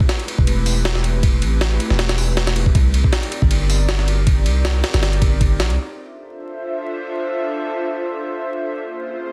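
An airy, breathy pad with a soft, warbling vintage chorus opens this nostalgic, raw drum and bass fragment alongside a gritty, pitched-up jungle sampler-style kit, its thumpy kick, high-tuned snare, hi-hat and ride sounding compressed and tape-warm as if re-recorded in a large room. A deep, sine-like 808-style bass with tube saturation enters at 0.4 seconds, sitting up front with the drums until both stop at 5.8 seconds, leaving the detuned pad to hold its sustained chords alone until 9.3 seconds. Light reverb and vinyl crackle colour a dense, heavily limited master.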